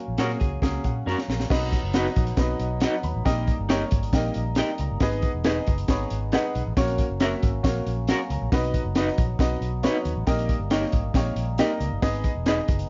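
A percussive tonewheel organ with key click sits in the background holding overdriven, chorused chords as this joyful, uptempo 1960s-style soul cut in B major kicks off at 137 BPM. A hollow-body jazz guitar plays a short riff from 0.2 to 1.3 seconds, while a woody, slightly detuned upright piano adds plate-reverbed accompaniment and fills, a twangy electric guitar through a small old amp stabs with tremolo, and a round, foam-muted fingered bass anchors the low end. Up front, a crunchy, saturated breakbeat kit with a high-tuned snare and punchy kick drives the groove, throwing in a fill at 1.1 seconds, all within a dark, warm production.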